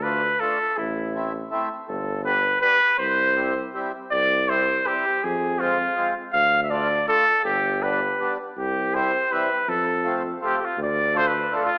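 A vintage-toned trumpet sings the melody up front in this bouncy, jolly alpine folk dance band piece in 3/4, over a reedy, close-miked accordion accompaniment and a distant tuba bass with light vibrato, all heard through a moderate recital hall reverb and an AM radio sound in a short cut from a longer piece.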